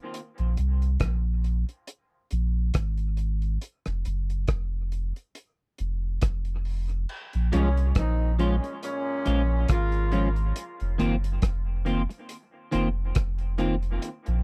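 A cloth-damped, thuddy drum kit opens this heavy, deep dub reggae fragment at 0.1 seconds, its tight kick, rim clicks, hi-hat and dark crash cymbals sounding dry and up front with a rolled-off top. A round, sine-like sub bass arrives at 0.4 seconds, sustained and deep with a fast attack, anchoring the slow, swung groove in the low register. The opening half moves from an Abadd9 chord into a stretch of bare rhythm section, before the harmony shifts to Bbm7 and then F7sus4. At 7.5 seconds a clean, twangy electric guitar enters with bright picked accompaniment, coloured by analog chorus and dub echo. A mellow horn section joins at the same moment as a brief, distant second line, its punchy ensemble tone carrying light vibrato and trailing dub echo. The whole piece has the close, dry sound of a 1970s studio with little reverb.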